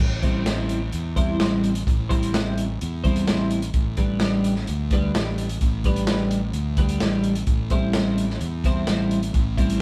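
Psychedelic rock with a dark, hypnotic mood, moving at 128 BPM in a straight 4/4 in A minor, this short cut from a longer piece circles through Am7, Gadd9/A and back to Am7. A fuzz-drenched fingered electric bass opens at 0.0 seconds, its round, punchy overdriven tone sitting low and up front. From 0.2 seconds a twelve-string electric guitar carries the riff, bright, twangy and compressed, with clean picked notes colored by a rotary speaker. A crunchy breakbeat kit joins at the same moment, with hi-hat, a tight kick and a medium-tuned snare, sounding gritty and saturated with a rolled-off top. The band plays live together in one room, wrapped in a moderate studio reverb that keeps the parts close and forward.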